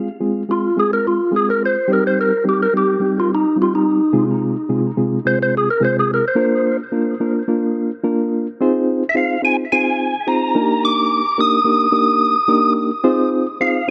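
Soul in F dorian at 108 BPM in a straight 4/4, this passionate, urgent passage cut from a longer piece opens on a reedy, mellow electric piano with fast tremolo comping over Fm, Cm and Bb, joined at 0.5 seconds by an up-front, flute-like tonewheel organ whose percussive key click, fast rotary speaker and tape echo carry a soloing melody until 8.6 seconds, before the harmony shifts to Fm7 and Ebmaj7 in a clean, lightly reverberant mix.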